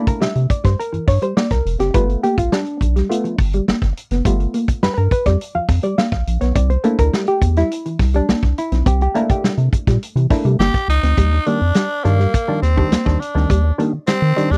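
A muted, stringy clav with a phaser takes the lead in this gritty funk excerpt, soloing its percussive stabs from the start to 11.2 seconds over C13 and G9 chords. A round, deep analog bass and a dry soul drum kit with a tight kick sit up front, while a mellow, clean electric guitar plays a fingered riff beneath. A raspy tenor saxophone with vibrato enters at 10.6 seconds, shortly before the harmony moves to Ebmaj7 at 11.2 seconds, all captured in a close, 1970s-style studio sound.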